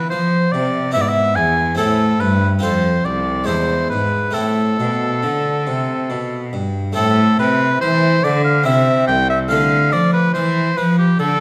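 From the first moment, a warm oboe with light vibrato sings a solemn, grave melody over a dry, close-miked harpsichord with two sets of strings and a clear, smoothly bowed cello bass, in this excerpt of a baroque-style sonata movement in A minor at 71 BPM in 3/4, set in a reverberant recital hall and moving through a progression that leans on E7 before returning to A minor.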